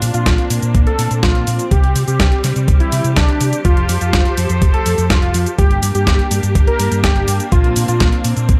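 A straight 124 BPM 4/4 pulse from a detuned 8-bit drum machine playing cabasa, hi-hat and a medium-tuned snare, joined at 0.3 s by a gritty, thumpy electronic kick, drives this sunny, playful italo disco clip in F major, where a dark, round hollow-body fingered bass anchors lush, distant bowed strings holding sustained chords through Bbadd9, C5, F and Gm while a thick, detuned sawtooth unison lead with a sub octave sings the melody through cassette-tape coloring and delay in a dry mix.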